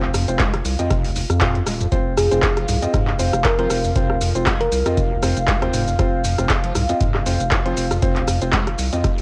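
Hypnotic and trippy, this short acid house cut in F minor at 118 BPM with a swung 16th feel pairs a squelchy, resonant square-wave acid riff, treated with overdrive, chorus and tape echo, with a round sidechain-pumped bass, intimate piano stabs carrying audible action noise, a booming drum machine of handclaps, metallic hats, rim click and shaker joined by a deep electronic kick at 0.4 seconds, a moody phased pad held in the background, and a tine-like thumb-piano-style pluck melody that appears from 2.2 to 5.0 seconds, all with the character of a cassette home recording.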